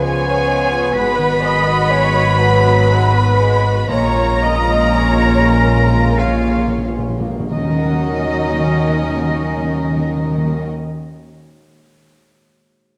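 Cinematic, emotional film score for orchestra in Eb minor and 3/4, moving with rubato at 44-65 BPM and slowing through its first 7.5 seconds, with a longing, sorrowful mood. An intimate chamber violin section carries the melody with vibrato, while a bright flute section, a clear solo oboe and a floating symphonic violin section add second lines over a woody, lush viola accompaniment, punchy French horn chords, ringing thumb-plucked harp arpeggios, and a bass of double basses and pure-toned cellos. Round, soft-mallet timpani enter at 3.9 seconds with a fill, and the orchestra sits in a wet scoring-stage reverb with a dark, warm production.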